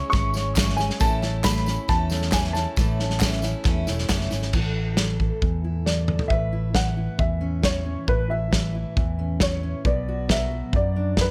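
Indie folk with a hopeful, anthemic lift at 136 BPM in A major, this short excerpt from a longer piece sets a worn, slightly detuned upright piano melody with digital delay over a dark, round fingered electric bass and an up-front, punchy indie drum kit, while a picked steel-string acoustic guitar with audible finger squeak, jingly tambourine and hollow group handclaps fill the opening until a full-bodied fingerpicked acoustic guitar takes over at 4.5 seconds, and a drum fill at 5.9 seconds leads into a final stretch moving from Aadd9 to Bm, all in a light small-room ambience.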